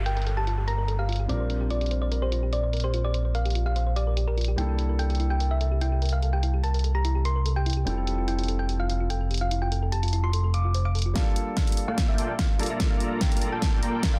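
A round, tine-like synth pluck carries the melody of this emotional, lush future bass excerpt at 146 BPM, set in a half-time 4/4 feel in G dorian. A second, warbling pluck plays arpeggios and a dark, mellow grand piano with audible action noise accompanies chords moving from Gm9 through Bb69, C13 and Fmaj9, both treated with delay and sidechain pumping, while a fat, saturated analog bass sits up front beside a big-room dance drum kit with a huge snare and low-pass filtered hats, and a faint downlifter opens the excerpt. At 11.2 seconds a build-up arrives with a drum fill, a punchy electronic kick and a thick, airy, detuned supersaw riff, heard in light digital reverb under a dense, heavily limited master.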